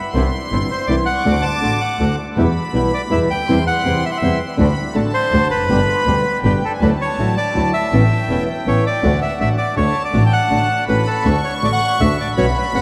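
Tango in 3/4 at 162 BPM with a rubato feel, this playful, elegant excerpt moves from G major to D major at 6.8 s and sits in a vast, echoing space drenched in cathedral reverb. A reedy, bright bandoneon carries the melody up front from 0.7 s, while a second bandoneon, dark, smooth and very quiet, adds stabs beneath it. A fingerpicked flamenco guitar with an acoustic, dark tone supplies the accompaniment, and a single bowed double bass, clear and earthy with light vibrato, holds the low end from a distance. Above them a studio violin section plays a soft-attack, pure, floating second line. The harmony passes through chords such as Cadd9, Em and C/E before settling into Dadd9, Aadd9 and A6, resolving on D at 11.2 s.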